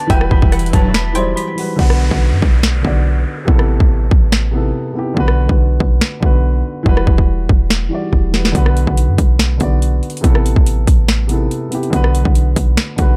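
A half-time trap groove from an overdriven drum kit, with its hard-clipped kick, sharp snare and metallic hats, drives this eerie, melancholic hip hop excerpt, where a deep, boomy 808 bass and a mellow baby grand piano with audible action noise run throughout, while an inharmonic detuned synth bell, a distant bowed string section, a twangy resonator pluck and a brief fat polysynth stab fill the opening before the hats fall silent at 1.8 seconds under an electronic downlifter and return after a drum fill ending at 8.5 seconds.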